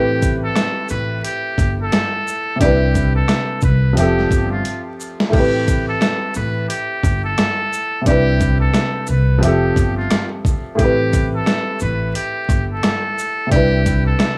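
Dark and gritty, this boom-bap hip-hop excerpt moves at 88 BPM in 4/4 with a swung sixteenth-note feel, settled in A minor as the harmony cycles through Am7, Cmaj7 and Fmaj7. A muted trumpet carries the melody in a narrow, breathy range, its buzzy, whispered tone trailed by tape echo and sitting back in the mix like an intimate jazz solo. Beneath it, a mellow vintage grand piano lays down smooth, short-sustained chords, while a pizzicato upright bass with gut strings gives a woody, thumpy low end. The dusty sampler-style drum kit enters at 0.2 seconds, compressed and up front, with a thumpy kick, medium-tuned snare, rim clicks, hi-hat, shaker and crash, its sound re-recorded in a large room. A drum fill at 4.7 seconds marks the turn back to the top of the progression, and vinyl crackle with small room ambience and light reverb wraps the whole track in a worn, smoky haze.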